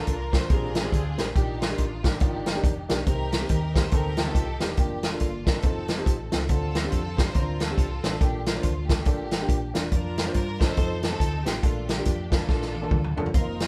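A swung 4/4 groove at 140 BPM drives this reverent, soulful uptempo gospel excerpt in Bb major, where a smooth, bowed string section with vibrato carries the melody over an intimate grand piano with audible action noise, a dark, round hollow-body electric bass and an up-front, punchy big-band drum kit in a live room, and a drum fill at 12.5 s leads into a mellow, flute-like tonewheel organ on a fast rotary speaker and a very quiet tambourine, both joining the band at 13.3 s.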